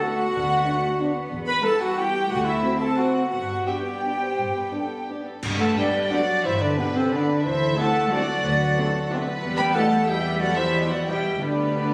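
Heard through a phone in a reverberant scoring-stage room, this short cut from a sweeping, elegant orchestral ballroom waltz in G major moves in a rubato 3/4 at 159-198 BPM, with floating, sul tasto studio violins carrying the melody over a pure, expressive flute, close chamber violins with vibrato and a distant clarinet as second lines, soft violas in the background, roomy French horn chords, dark trumpet stabs until 5.1 s, intimate cellos and double basses holding the bass, a burst of clash cymbals and concert bass drum at 5.4 s, and very quiet, bright trombone chords from 5.8 s.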